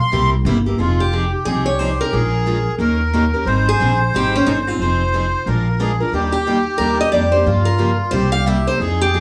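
A fast 180 BPM swing in 4/4 drives this excerpt of acoustic string jazz manouche in F minor, with woody, thumpy upright bass and a boxy parlour steel-string guitar comping from the start, while a reedy, sweet accordion with light tremolo tuning plays a second line. At 1.0 seconds a bright concert steel-string guitar takes the virtuosic melody, fresh strings and finger squeaks audible, over changes that move from Fm7 through Bbm7, Eb7 and Abmaj7 to close on C7. The bass, parlour guitar and accordion sit up front in a small, lightly reverberant room, giving the swinging performance an intimate, close feel.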